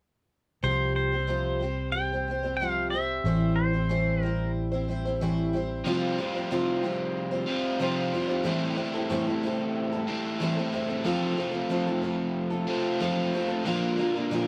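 A shimmering, octave-doubled twelve-string acoustic guitar rings up front through this jangly, nostalgic rock fragment, its full-bodied picked chords running from start to finish as the band plays live in a moderately ambient studio room. In the opening, a clean, compressed pedal steel with slide and volume swells carries the melody until 4.5 seconds, while a round, punchy fingered bass anchors the low end. At 5.8 seconds the bass stops and a bright, overdriven, double-tracked electric guitar enters with a riff, and later the chords move on to F and Bb.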